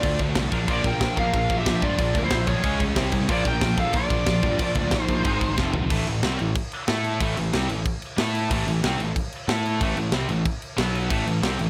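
A dry recording puts a tight metal drum kit up front, with a medium-tuned snare, tight kick, crash and toms carrying a mid-forward, rolled-off tone. This dark, aggressive heavy metal passage, cut from a longer piece, opens with two distorted lead guitars treated with delay: a dark-toned melody in the upper register and a brighter second line set further back beneath it, both falling away at 5.5 seconds. Underneath, a heavy high-gain guitar and two scooped high-gain guitars, one of them double-tracked, play picked riffs that sit in the background throughout. A fuzzy, overdriven electric bass with a growly edge anchors the low end. A drum fill at 5.6 seconds leads into a second section from 5.9 seconds, where the harmony settles around A minor.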